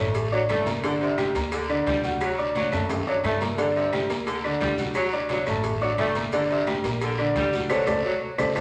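The bright, up-front upright piano provides the accompaniment in this passionate, danceable salsa excerpt at 175 BPM in G harmonic minor, joined by a clear, tight saxophone section on the second line, a dark pizzicato upright bass, distant thick-skinned congas, a round cowbell, raspy guiro, grainy maracas, woody claves and ringing timbales and agogo bells, all set in a roomy studio reverb, with drum fills at 2.7 and 7.7 seconds and a closing band accent on a D7 chord.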